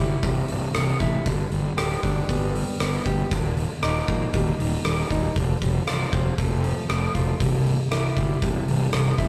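A rough rehearsal-room recording with tube saturation and a moderate booth ambience frames this short cut from a longer piece of quiet-loud alternative rock, moving at 117 BPM in a straight 4/4. A dark, clean electric guitar plays fingered arpeggios from the first moment, set at a lower level than the other parts. Beneath it, a fingered electric bass pushed through overdrive and fuzz gives a growly, round low end, direct and amped. An oversized, low-tuned acoustic drum kit enters at 0.2 seconds with hi-hat, rim click and a punchy kick, sitting up front with a gritty, saturated character and a big, pumping room around it. The harmony travels from C through G, Eb and F before landing back on C at 7.4 seconds, giving the passage a cathartic yet bittersweet mood.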